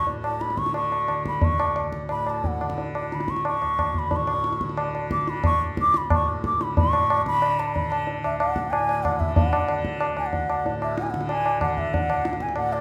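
In a straight 4/4 at 182 BPM that keeps speeding up throughout, this serene, meditative fragment of Hindustani classical music unfolds in raga Yaman on D. A mellow, airy bamboo bansuri carries the expressive melody with vibrato and tongued phrasing, over a softly plucked tanpura drone whose buzzing shimmer sits low and quiet. A high-tuned tabla with a short ring enters at 0.1 s, up front in a live room, and a new section arrives at 6.8 s, all within the reverb of a recital hall.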